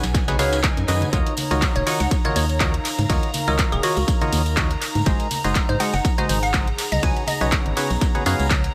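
A soulful, energetic piano house groove in Eb minor at 122 BPM opens with a hollow, percussive organ stab riff, a dark FM bass and a soft, sul tasto violin section holding sustained chords in the background, all pumping against a punchy, overdriven kick up front. Layered house drums with overdriven handclaps, hi-hat and ride, a very quiet gritty soul-style kit, and bright congas and tambourine fill out the swung rhythm, while a warbling, nostalgic tape-like pad floats behind and a faint electronic swell passes at 0.4 seconds. A glassy, crystalline wavetable pluck carries the melody with chorus and tape echo over chords moving from Db9sus4 to Ebm9 and Ab7 in this echo-heavy excerpt.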